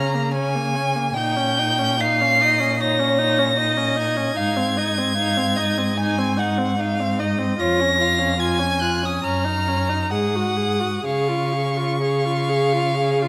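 Classical chamber music for string quartet, this slow romantic movement unfolds with a warm, tender mood and a flexible, rubato feel over 13.3 seconds cut from a longer piece. The first violin carries the melody high in its register, its tone rich and focused with a singing vibrato. Beneath it, the second violin plays a smooth, even second line, close and intimate in sound. The viola fills in the accompaniment with a soft attack, expressive portamento and a mellow glow, while the cello anchors the bass up front with a full, vibrant tone and a silky top. Close, detailed microphones capture each bowed player clearly within a moderate recital hall reverb that lends the blend a gentle bloom.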